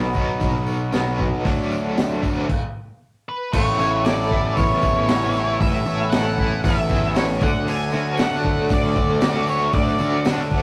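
A crunchy breakbeat drum kit with a punchy kick, high-tuned snare and dark cymbals drives this trippy, kaleidoscopic psychedelic rock excerpt alongside a round fuzz-overdriven picked bass, a bright double-tracked overdriven guitar riff with tremolo, reedy breathing pedal harmonium chords in the background and a faint jingly tambourine, with a stop at 2.5 seconds before an octave-fuzz lead guitar melody enters at 3.3 seconds over a gritty, tube-saturated rehearsal-room sound.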